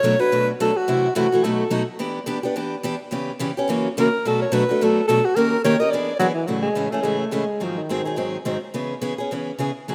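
A rough home demo mix sits in a lush hall reverb as this swinging, playful jazz excerpt moves at a brisk 214 BPM in 4/4, the eighth notes lightly swung. A bright, boxy picked steel-string acoustic guitar plays accompaniment up front throughout, moving through minor-seventh and half-diminished changes before settling into A major at 6.5 seconds. A clear alto saxophone with vibrato carries the solo melody up front, stating a short phrase at the start and returning at 4.0 seconds to play on into the new key.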